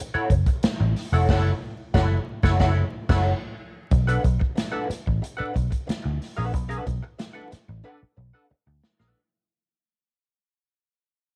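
A dry home cassette recording with vinyl crackle frames this brief fragment of cool, sly funk, which moves at 92 BPM in a straight 4/4 in B minor. A dark, clean hollow-body jazz guitar picks the accompaniment in a middle register, colored by wah, cassette tape saturation and plate reverb. Up front, a vintage muted electric bass plays round, foam-muted picked notes through an amp. The swinging big-band drum kit, also tape-treated, brings an airy, polished acoustic sound with a medium-tuned snare, a punchy kick, hi-hat and crash. The band hits accents over F#m7 and breaks briefly from 3.3 seconds. At 3.9 seconds the harmony shifts to Bm7 as the music begins to fade, and a drum fill arrives at 7.8 seconds.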